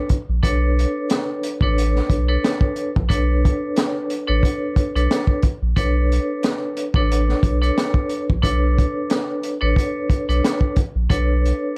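Reflective and gritty, this boom-bap hip-hop excerpt moves at 90 BPM in B minor with a lightly swung 16th feel, as a saturated, punchy breakbeat kit with a high-tuned snare and rolled-off top sits over a round, deep sine sub bass, while a metallic, ringing vibraphone struck with hard mallets, its fast motor vibrato filtered to a band-limited vintage tone, plays over a single Bm9 chord in a dry, up-front mix.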